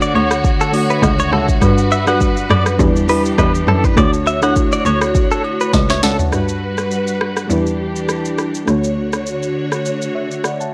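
Afrobeats with a romantic, sunny mood and a lightly swung groove, this piece sets a soft, round FM electric piano with chorus and a lush bowed string section over a focused, bowed cello bass line and an up-front electronic drum kit with deep kick, sharp snare and crisp hats. A bright, twangy clean guitar riff with tremolo and tape echo runs until about 6.2 seconds, while agogo bells and woodblock sit in the background, and the electric piano plays a fill near the start before a drum fill leads into the second section at 6.3 seconds. The sound is dry and gritty, with a cassette-tape character, and the passage is cut from a longer piece.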